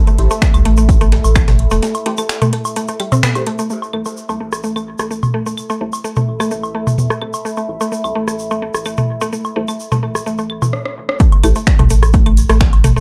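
Quirky and sparse, this minimal techno cut moves in a straight 4/4 with a dark, lightly reverberant production. A woody, round mallet-like synth pluck carries the riff throughout, treated with chorus, phaser and dub echo, while a rubbery, nasal square bass bounces beneath with sidechain pumping. A deep, moody ambient pad and a filtered dub chord stab, muted and evolving with ensemble chorus and echo, fill the middle, and a very quiet swarming drone hovers only through the opening seconds. The booming analog drum machine ticks along with claves, rim clicks, toms and woodblock, joined by a grainy tube shaker, an overdriven house kit with metallic hats and finger snaps, and a gritty breakbeat sampler-style kit sitting in the background. A punchy, overdriven electronic kick sits up front in short bursts, and after a break from 1.8 seconds, filter sweeps shape the pluck and stab through the long middle stretch. 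A stop and drum fill at 10.7 seconds lead into a drop at 11.2 seconds, where the kick and breakbeat kit return.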